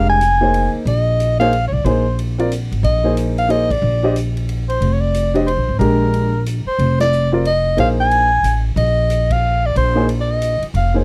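Modal jazz in a swinging 3/4 at 182 BPM, this searching, spiritual excerpt rests on a Bb9sus4 chord in Bb mixolydian, with a mellow soprano saxophone carrying the melody up front, its light vibrato and smooth top gliding over woody, short-sustained vintage upright piano chords. A pizzicato upright bass with steel strings sits close and warm underneath, while a big-band drum kit with a punchy kick, medium-tuned snare, hi-hat and ride cymbal swings further back in a natural big-room sound. The band hits accents together at 3.7, 7.0 and 9.3 seconds, all captured in a dry, close 1970s-style studio with small room ambience.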